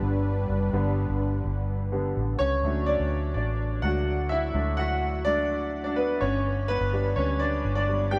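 A clear, smooth grand piano leads this uplifting, anthemic pop excerpt at 126 BPM in D major, tuned slightly below standard pitch. It plays over a round, foam-muted electric bass and a detuned sawtooth analog pad with slow attack, which holds chords only until 2.6 seconds. The harmony moves from G to D and back to G, with lush chorus on the piano and the whole dreamy mix soaked in huge ambient reverb.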